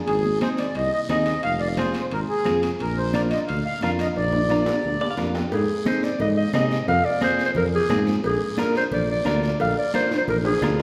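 This fiery, danceable cumbia, cut from a longer piece, opens with a reedy accordion out front, its slow beating adding shimmer. Beneath it sit a dark, classical-style tuba bass, a raspy guiro, and ringing metal-shell timbales and cowbell, compressed and saturated in the background. Thick-skinned, damped, high-tuned congas and a clean, picked electric guitar with a compressed, electric tone join almost at once, moving through Ab, Fm and Bb at a brisk 176 BPM in straight 4/4. A drum fill and a short guitar fill lead into the handoff as the accordion bows out, and at 5.5 seconds a growling clarinet takes the melody up front, gritty and jazz-styled with light vibrato. Another drum fill arrives near the close, and the recording sits in a church or concert hall with a lingering recital-hall reverb.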